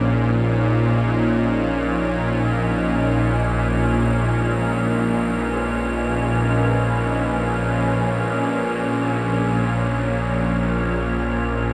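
In this unsettling, desolate ambient fragment in free time, a tense, nasal, string-like bowed drone sits up front beneath a detuned, wave-folded sweeping pad with phaser and chorus in the background and an icy, crystalline glass pad with shimmer on top, all held in a cavernous cathedral reverb as the harmony slides from Bbm to Badd9/Bb at 2.6 seconds.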